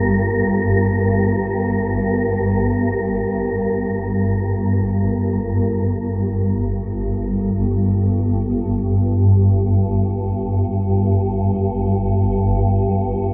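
Drenched in a huge, wet reverb, this dark, desolate ambient drone fragment places a swarming, nasal, detuned low drone up front, its tone shaped by a filter sweep during the opening, beside a faint, breathy, wind-like tuned noise layer that stops at 5.8 seconds, after which the tense, granular drone sustains alone until 13.3 seconds.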